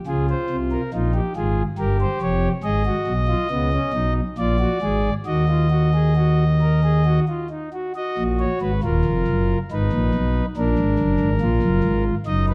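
A straight 3/4 pulse at 69 BPM carries this solemn, contemplative baroque-style fugue in three parts, set in Eb minor and tuned to A4 = 439 Hz. A single pipe organ on a principal stop plays alone from 0.1 to 12.5 seconds, its baroque voicing spanning Eb1 to Eb5. The tone is warm and smooth, with a chiff at the start of each pipe's speech, and it sits up front in a moderate scoring-stage reverb with a 1.6-second decay. The harmony moves through Db, Gm7b5 and a rootless Fm7b5/Ab before a Bb7 resolves to Ebm. After the second section begins at 8.0 seconds, Abm and Bb close this fragment of a longer piece.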